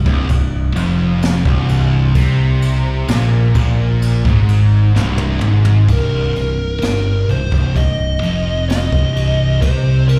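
A growly, up-front fingered electric bass anchors this heavy, hypnotic stoner-doom riff at 64 BPM in C minor, joined by two dark fuzz guitars in the background, a bright double-tracked overdriven guitar with slapback echo that drops out at 5.9 seconds, and a boomy acoustic kit played with brushes that fills from 5.0 seconds, before a compressed fuzz lead guitar with slapback and tape echo enters at 5.9 seconds over a C minor chord, all heard as a live gig through a club PA with reverb.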